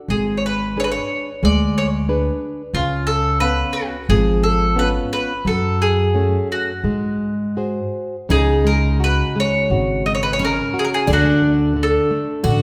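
A round, up-front mandolin carries the melody of this passionate, longing fado-style ballad, its picked double strings singing over a rubato 4/4 pulse through a wet recital hall reverb. A small, fingerpicked nylon-string guitar and a woody, thumpy upright bass on gut strings play beneath it throughout, with chords moving from G#dim through C#7 and F#m. At 8.3 seconds a shimmering, octave-doubled twelve-string acoustic guitar enters with a picked second line, finger squeak audible, as the harmony shifts to C#sus4 and then D in this excerpt cut from a longer piece.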